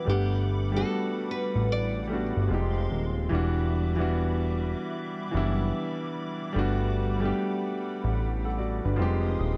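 A swung sixteenth-note hip hop groove in 4/4 carries this hazy, melancholic cut from a longer piece, where a fingerpicked nylon-string guitar with finger squeak and plate reverb carries the melody only until 2.9 seconds, an intimate, woody upright piano with audible action noise sits up front as accompaniment, a hollow, flute-like pad warbles beneath through ensemble chorus, and a fat, detuned sawtooth analog bass with a filter sweep holds the low end from 0.1 seconds, the whole piece colored by light reverb and cassette tape.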